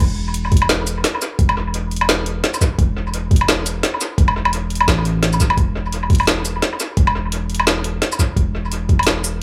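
An up-front, overdriven electronic drum kit drives this dark, spacious half-time drum and bass drop at 172 BPM, its woody snare, bright hats, shaker and woodblock layered and soaked in dub echo over a 57% swing on the 16ths. A gritty, thumpy kick, compressed, pitched down and tape-warm, joins from 0.5 seconds, while a deep, mellow sine 808-style bass holds long decaying notes from the very start. Moderate spring reverb and small room ambience fill out this echo-heavy cut from a longer piece.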